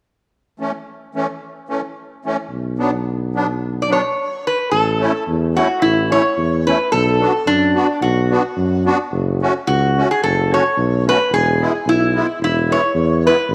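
A bouncy 2/4 at 109 BPM with a light swing on the eighths sets up this jolly alpine dance-band piece in A major, cut from a longer performance. A reedy musette accordion opens the track at 0.6 seconds, its wet tuning giving a shimmering, up-front accompaniment. A mellow tuba joins at 2.5 seconds on the bass line, distant and roomy in a classical style with a light vibrato. At 3.8 seconds a metal-body resonator slide guitar enters to carry the melody, played with fingerpicks and sitting nasal and metallic at the front with a slapback echo. A brief stop leads into the second section at 4.7 seconds, as the harmony moves from A through Bm7, F#m and E. A moderate echo-chamber reverb and small-room ambience frame the ensemble.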